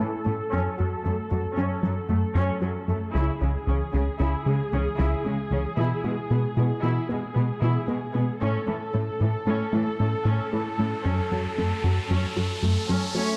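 Relentless and vast, this cinematic build-up in 5/4 at 114 BPM sets a rich, up-front viola section and a smooth cello section over a punchy, wave-folded analog bass riff and tine-like FM thumb-piano arpeggios warbling with chorus and delay in the background, all in a dark production with moderate scoring stage reverb, as an electronic riser enters at 10.5 seconds and a mellow French horn section and a distant, intense violin section arrive only at 13.1 and 13.2 seconds before the cut.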